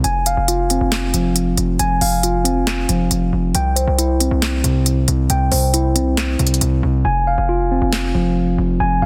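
Trap hip hop in a half-time feel with an eerie, melancholic mood, cut from a longer piece. A mellow tine electric piano plays arpeggios through a low-pass filter and digital delay over a punchy, heavy 808-style bass with a fast attack and decaying sine tone, while an overdriven trap kit adds a sharp snare, handclaps and crisp hi-hats, all placed up front in a digital ambience as the chords move from Fm to C and back. The hi-hats drop out at 7.0 seconds, and the drums stop at 8.0 seconds, leaving piano and bass in a dense, heavily limited modern master.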